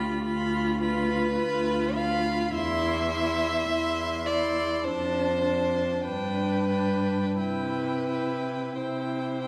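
Rubato phrasing in a slow 4/4, around 42-53 BPM, gives this serene C major romantic string quartet fragment a breathing, unhurried pulse, as the harmony moves from a rootless G7 over D through C/E, Dm/F and G to rest on C. A distant, focused first violin sings the high melody with vibrato, while an up-front second violin carries a soft-attacked, expressive second line with portamento, a remote viola fills in the accompaniment with gliding, bowed warmth, and a clear, close cello anchors the bass. Wet recital hall reverb places the quartet further back in the room.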